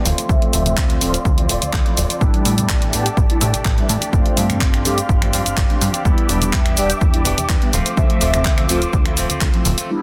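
Funky and groovy, this filtered disco house excerpt in D dorian moves at 125 BPM, with a punchy electronic kick, a layered house kit of cabasa, finger snaps, handclaps and hi-hat, and faint, distant congas and tambourine joined by a plucky, tube-saturated analog bass, a bright, clean direct-recorded electric guitar riff, mellow chorused and phased synth brass, and a rich violin section holding sustained chords in the background, the bass, guitar, brass and strings all pumping to the sidechain under a filter sweep across the full 10 seconds, over a Dm7, A7sus4, G7sus4, Em7 progression in light digital reverb and a dense, heavily limited master.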